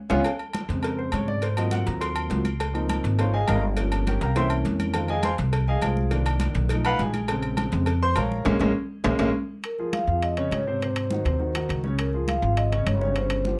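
A straight 4/4 pulse at 205 BPM drives this sultry, sophisticated Afro-Cuban jazz excerpt in Bb minor, opening on a drum fill and a band accent. Woody, pizzicato upright bass sits up front with the intimate grand piano, whose action noise and long sustain are audible as it takes a solo through 9.6 s over rich changes such as Bbm9/F, Ab13, Dbmaj13 and a Gm7b5 to C7b9 turn. Percussion fills the background: high-tuned, thick-skinned congas in a live room, and round, low-tuned bongos and cowbell that drop out at 9.3 s. Closer and drier, ringing metal-shelled timbales and agogo bells keep time, and the band punches out accents near the close of the piano solo. At 9.7 s a mellow, close-miked vibraphone played with soft mallets and motor off takes the melody, its full, metallic tone riding Ab7 to Db69 under light reverb with lossy compression artefacts.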